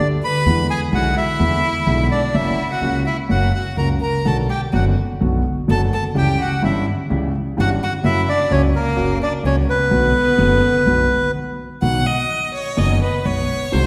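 Tango in B minor at 127 BPM with a rubato feel, this dramatic, passionate cut from a longer piece sets a reedy, up-front bandoneon melody over an intimate concert grand piano with audible action noise and a woody, growly pizzicato upright bass. A single bowed violin with vibrato carries a clear second line beneath the bandoneon, all in the lush reverb of a concert hall. After a brief stop at 11.3 seconds, the violin takes a short solo from 11.8 seconds to the close.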